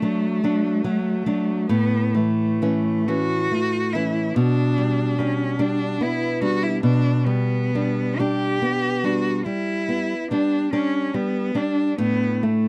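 A dry, close recording in a 1970s studio style, with a light touch of reverb, frames this lyrical, warm romantic duo, a short passage cut from a longer piece and played with free rubato in 12/8. Up front, a single bowed cello sings the melody in a rich, smooth, even voice with vibrato, while a small-sounding fingerpicked nylon-string guitar sits just as close, supporting it through D, A and G/B harmonies until the chords drop away at 12.0 seconds.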